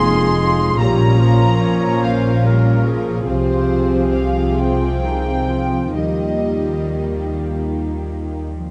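Dark, warm production sits in the moderate reverb of a scoring stage, giving this cinematic fragment, cut from a longer piece, a sorrowful and longing cast in a rubato 6/8. Up front, the double bass section bows a woody, close line with vibrato, joined in the background by an intimate cello section playing sul tasto, while a distant viola section floats its accompaniment beneath. The melody belongs to a violin section bowed sul tasto with a pure, soft attack, shadowed by a mellow, airy flute section kept very quiet and close-miked; both fall away at 7.3 seconds. A second violin section with light vibrato, a roomy solo clarinet in classical style, and a tight French horn section holding sustained chords in the background fill out the inner voices. A ringing, fingerpicked concert harp spreads arpeggios underneath and is the last to sound, lasting to 8.7 seconds. The harmony moves from Fm through Bbm and Csus4 to a closing Ebadd9.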